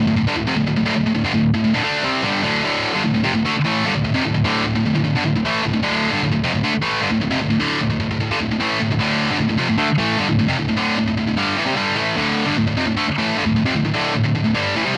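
Heavy and relentless, this short metal cut sits in D minor at 151 BPM in a straight 4/4, tuned slightly sharp to A4 = 441 Hz. A lone high-gain electric guitar, bright, picked and double-tracked, plays up front from 0.0 to 15.0 seconds across a range of D2 to D4, opening on a D5 chord before the music shifts into a new section at 2.6 seconds. Light reverb and a dark production frame the distorted tone.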